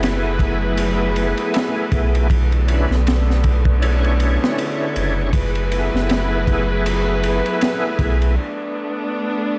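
Dry and crackling like worn vinyl, this dark, hypnotic trip hop excerpt moves at 79 BPM in F# minor, with a punchy, saturated breakbeat kit of dark cymbals and a high-tuned snare sitting up front beside a deep, round dub sub bass, while a thick, overdriven tonewheel organ with chorus vibrato, slow rotary speaker, tremolo and tape echo and a rich, bowed string section roughened by 12-bit sampler grit hold F#m11 and Bm11 chords, the strings carrying on alone through the break from 8.4 to 9.6 seconds on a closing Bm7.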